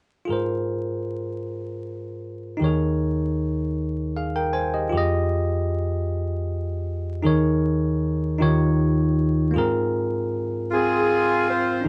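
Gospel in a slow 6/8, reverent and uplifting, this short excerpt opens with a barky tine electric piano, bell-like and bright, laying down clean, up-front chords that move from Ab69 through Eb7sus4, Fm9 and Eb9 before settling back on Ab69. At 10.7 seconds a close-miked saxophone section enters with a tight, jazz-style melody carrying light vibrato, joining the keys just before the clip is cut off at 11.9 seconds. A moderate studio reverb lends gentle space, while vinyl crackle and a dulled top end give the sound an aged, record-like patina.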